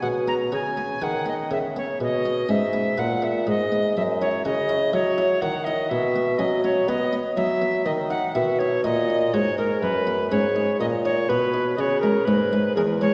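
This classical excerpt is a baroque-style sonata movement with continuo, dance-like and radiant, moving at 61 BPM in 4/4 with a rubato feel and settling in B major from 7.9 s. An alto recorder carries the melody between A#4 and A#5, its airy wooden tone marked by vibrato, tongued notes and a touch of chiff, placed up front. A mellow bassoon supports the bass line from E2 to B3 in a classical style with light vibrato and a roomy quality. A buff-stop harpsichord fills in the accompaniment across E2 to E5 with a plucked, muted, lute-like sound in the French style. The harmony moves from B through F#5 and back to B before closing on C#m, and the trio sits in a concert hall, heard from further back, with a reverb that lingers for 2.2 seconds.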